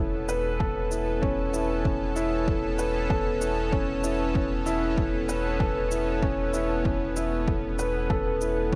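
A hopeful, luminous piece of piano and strings electronica at 96 BPM in a straight 4/4 opens at once with a dark, mellow upright piano riff, a lush unison pad holding sustained chords and a round sine sub bass. The woody piano sits up front with long sustain and a digital delay trailing its notes, while the thick, airy pad blends detuned sawtooth and square waves with a noise layer, a slow attack, chorus and a bright sheen. Beneath them, the deep sub bass has a fast attack and holds steady on E1. Both the pad and the sub bass pump with sidechain compression. A layered electronic shaker slips in at 0.3 seconds, and a punchy, overdriven electronic kick drum follows at 0.6 seconds, both set in a small room ambience. The whole cut rests on a single Aadd9/E chord under light reverb, tuned to A4 = 438 Hz, and is taken from a longer piece.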